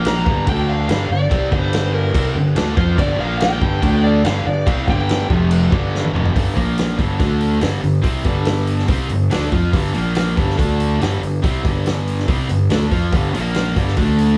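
A double-tracked, cranked stack guitar riff, growly fuzz bass and a punchy vintage drum kit open this smoky, heavy blues rock and southern rock excerpt in G minor at 142 BPM. A dark, overdriven slide guitar enters at 0.1 s with a solo carrying slapback echo and plate reverb, stopping at 5.3 s just before a drum fill at 5.9 s. The bright, up-front riff and bass then keep driving over the rolled-off kit in a small, lightly reverberant room.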